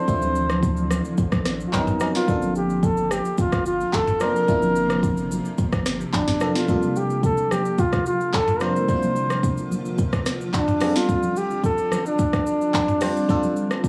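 Hypnotic and soulful, this amapiano passage, cut from a longer piece, sets a mellow, classically styled flugelhorn solo up front over a biting FM electric piano treated with chorus and phaser, and a cloudy granular pad that breathes in the background with sidechain pumping. A soft-kicked, sharp-snared electronic R&B drum kit with metallic hats and handclaps sits forward alongside very quiet, thin-skinned congas, while a thick, saturated sub bass drops out at 6.4 s. The whole has the dry, small-room character of a home cassette recording, with tape echo trailing the horn.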